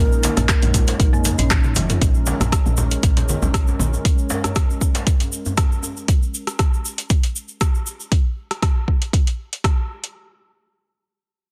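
A dense, heavily limited modern master with studio ambience frames this earthy, spiritual afro house cut, taken from a longer piece and moving at 118 BPM in Bb minor on a Bbm7 chord with a light swing. It opens on a drop where a breathy, reedy bass bansuri with vibrato sings a brief melody through delay, while a dry, rustic marimba with soft mallets plays arpeggios and a woody, round FM bass pumps underneath with tube saturation. A vintage analog pad holds detuned, warbling chords with subtle chorus and sidechain pumping, and from 2.0 seconds a filter sweep runs across it until 8.1 seconds. A drum fill closes the opening drop, after which the deep house kit, with metallic hats, handclaps, rim clicks and toms, carries on alongside a deep, tape-warm electronic kick that sits up front until 9.8 seconds. Ringing congas and a djembe in the background bring a live-room, hand-played texture, while a grainy cabasa adds bright shimmer from its small room.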